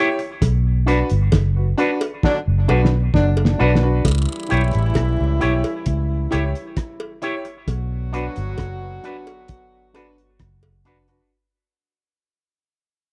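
Serious and laid-back, this roots reggae excerpt moves in a straight four-four feel, captured as a dry, close 1970s-style studio recording with a faint mains hum. A cloth-damped drum kit sits up front, thuddy and muffled, with a fat snare, tight kick, rim clicks and hi-hat carrying a gritty, saturated, rolled-off character. Beneath it, a vintage muted electric bass played with the fingers sounds dark, round and foam-muted, while a clear, woody upright piano adds smooth stabs. An electric guitar with an envelope filter plays dark, clean, picked accompaniment through spring reverb and tape echo, and a cowbell and jawbone-type rattle add close, dry percussion low in the mix. During a band accent, as a drum fill begins, a mellow horn section enters at 2.2 seconds with light vibrato, octave doubling and tape echo, and from 4.0 seconds the piece fades out as the harmony moves from B minor to C# diminished and back.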